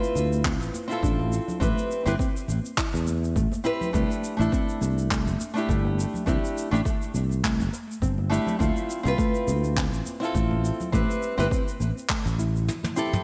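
Sunset chillout at 103 BPM in C major, this sunny, warm excerpt from a longer piece rides a swung sixteenth-note feel through a relaxed cycle of Dm9, Am7 and C6 chords. Up front, a fingerpicked nylon-string guitar carries the accompaniment with a small, warm tone and a touch of digital delay. Behind it, a soft, round synth pluck plays dark arpeggios with chorus and delay. The fretless electric bass enters at 0.2 seconds, growly and direct, while a punchy, layered electronic kick joins at 0.4 seconds. A vintage brush kit with handclaps, shaker and toms adds a rolled-off acoustic texture under gated reverb, very quiet ringing congas sit close in the mix, and a drum fill closes things at 12.7 seconds. The bright 1980s-style digital production is framed by a lush hall reverb and small room ambience.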